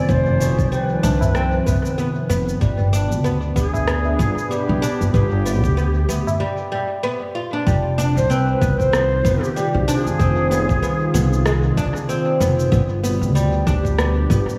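A deep electronic kick, an electronic shaker and rim click, and a high-tuned, dry tabla that drops out at 6.4 s set a swung 95 BPM groove for this meditative organic downtempo piece, where a thumpy, dark pizzicato upright bass sits up front under plectrum-plucked double-string oud arpeggios, a smooth, detuned sawtooth pad with chorus and sidechain pumping on Fm7 and G chords, and a distant, airy cedar flute melody with vibrato, gritty 12-bit texture and analog delay, all in an echo-heavy mix with plate reverb.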